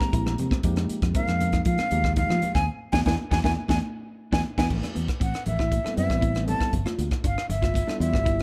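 A straight 4/4 groove at 118 BPM drives this slick, nocturnal electric jazz fusion excerpt, where a crisp, up-front drum kit with a high-tuned snare and tight kick in a pumping small room anchors a direct fingered electric bass, faint ringing vintage congas and compressed, chorused clean guitar stabs in the background, while a worn, slightly out-of-tune tine electric piano comps under a breathy, soft-attack flute with slapback echo; the band hits an accent at 2.7 seconds, drums and electric piano fill from 3.7 seconds, and the flute takes an expressive solo as the music settles into A minor at 4.7 seconds, all inside a dark, lightly reverberant mix.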